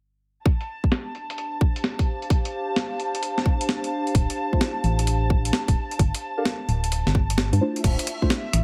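Soulful and skippy, this two-step UK garage excerpt rides a swung groove of a tight, up-front electronic kick and a gritty, overdriven breakbeat sampler kit of snare, hi-hat, finger snaps and crash, with veiled con sordino violin-section chords carrying 12-bit sampler grit and sidechain pumping, a warbling, nostalgic tape-like pad drifting in at 1.4 s, a hollow, organ-like FM bass arriving at 4.1 s, followed at 4.5 s by deep, mellow chord stabs treated with chorus, phaser and tape echo, and the kick briefly dropping out at 7.4 s, the whole set in a heavily compressed, radio-like digital ambience.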